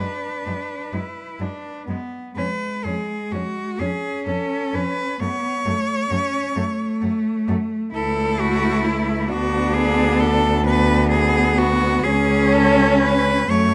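This excerpt from a longer classical piece opens with four cellos sounding together, a lyrical, tender ensemble moving at a slow 43 beats per minute in a lilting 6/8 with uneven, rubato beats. The melody sits up front in a rich, smooth, even voice with vibrato, singing between E4 and C#5, while a second cello beneath it traces its own line from G#3 to E4 with a soft attack, expressive portamento and vibrato. Further back, a warm-toned cello carries the accompaniment in a narrow band from G#3 to C#4, sounding distant and expressive with its own gliding portamento. Anchoring the group, the bass cello holds low between C#2 and F#2, close, even and smooth, its warmth matching the accompaniment's. The harmony starts in F# minor, passing through G#m7b5/F# and C#/E# before settling on F#m at 5.2 seconds, then brightens toward A major from 7.9 seconds, ending on Amaj9/C# at 12.0 seconds. Close, detailed microphones and a light reverb give the bowed tone an intimate presence, with tuning set slightly high at A4 = 444 Hz.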